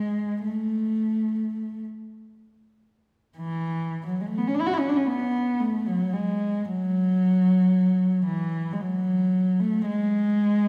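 Classical and serene, this brief excerpt from a longer piece for unaccompanied cello unfolds in a free, rubato 3/4 at a slow 31-59 BPM, with a single bowed cello, dark and woody with vibrato and played sul tasto, singing a lyrical line up front and close before a wet recital hall reverb of 1.8 seconds that places the listener further back in the room, all tuned to A4 = 439 Hz over its 10.7 seconds.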